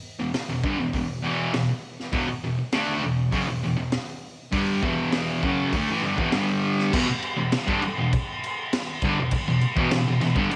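Gritty and menacing, this short garage rock cut is taken from a longer piece and moves at a straight, steady stride in common time. A fuzz guitar carries the riff from 0.2 seconds, its bright, distorted, picked tone double-tracked and sitting up front, reaching from low E2 up to D4. The raw garage drum kit enters at 0.3 seconds with crash cymbal, hi-hat, kick drum and snare drum, its acoustic sound saturated and pumping in a small room, with dark cymbals, a high-tuned snare and a punchy kick under a rolled-off top. The harmony holds on E minor, shifts briefly to a G power chord at 6.3 seconds, and returns to E minor as a new section begins at 6.9 seconds. A light small-room reverb gives the whole cut a close, rough-edged presence.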